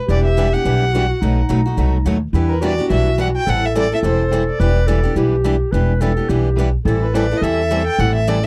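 A woody, pizzicato upright bass sits up front in this fiery, swinging slice of gypsy jazz in E minor, cut from a longer piece and driving along at 213 BPM in 4/4. Above it, a warm bowed violin carries the melody with vibrato and portamento, pausing at 5.0 seconds and returning at 7.0, while a breathy subtone clarinet weaves a mellow second line. Two picked steel-string acoustic guitars supply the accompaniment, one bright and boxy and the other darker with finger squeak further back, all captured in a dry, close 1970s-style studio sound over chords moving from Em9 through B7 and Am7 to Am9.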